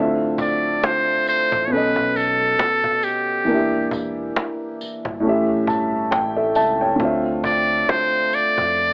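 A dark, mellow upright piano with cassette-tape softness and plate reverb opens this reflective, melancholic lo-fi hip hop excerpt in D minor at 68 BPM alongside a deep sine sub bass in the background, before a buzzy, breathy trumpet with a metal mute takes a close-miked jazz solo with light vibrato and scooped notes at 0.4 seconds over a woody cajon with sampler grit and a jingly tambourine, the piano adding a fill from 5.2 to 7.0 seconds as the chords move from Dm7 through B7, Em7b5 and A7 back to Dm7, all under an AM-radio haze.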